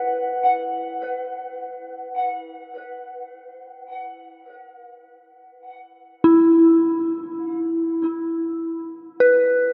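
Ambient in free time, luminous and peaceful, this short excerpt features a soft FM synth bell playing alone and up front, its pure, gentle tone striking with a fast attack and then decaying into a long release. Chorus, phaser and a diffuse ambient delay color the bell, which sits over an Esus2 harmony until the chord falls away at 9.2 seconds. A wet cathedral reverb of 6.5 seconds places everything in a vast, echoing space.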